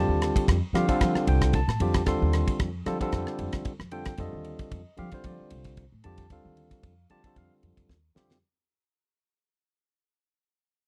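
Funky and slick, this brief electric jazz fusion excerpt moves at 113 BPM in 4/4 with a light sixteenth-note swing, sitting on a single F13 chord in F mixolydian while the whole passage fades out. A bright, barky tine electric piano plays up front over a woody, growly pizzicato upright bass, and a damped 70s drum kit enters at 0.2 s with a fat snare, tight kick, rim clicks and dark ride cymbal, finishing with a fill at 7.9 s. The sound is dry and close, like a 1970s studio session with little reverb.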